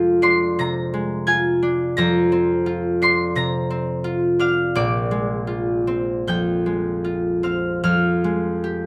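An up-front recording with light reverb captures a lone concert harp, its acoustic, fingerpicked strings ringing across a span from Bb1 to C7. This gentle, wistful classical fragment, cut from a longer solo harp piece, moves in 4/4 with a rubato feel, drifting through Fm6, Bbadd9/F and Bb9 before settling on Fmadd9 near 7.8 seconds.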